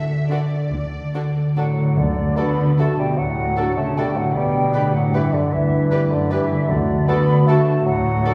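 Heard from further back in a reverberant concert hall, this elegant, sweeping orchestral ballroom waltz in D major moves in a rubato 3/4 at 135-165 BPM, with a ringing concert harp playing arpeggios from the start alongside a lush violin melody, joined by a second violin line, very quiet violas, expressive cellos with portamento and bowed double basses, then airy flutes and an up-front bassoon from 1.6 s, very quiet timpani at 2.0 s and again at 6.7 s, and oboe and clarinet lines with a loose French horn section holding sustained chords from 2.4 s.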